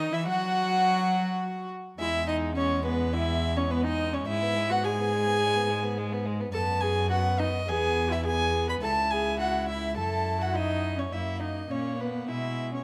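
A rubato 4/4 pulse drives this lively, spirited classical-period string quartet, where one bowed gut-string violin carries the low-lying melody while a second, reedy violin sits up front on a higher line above, a distant viola with light vibrato fills in the accompaniment, and a nasal cello anchors the bass up front, all heard through close, detailed microphones in a moderate recital-hall ambience.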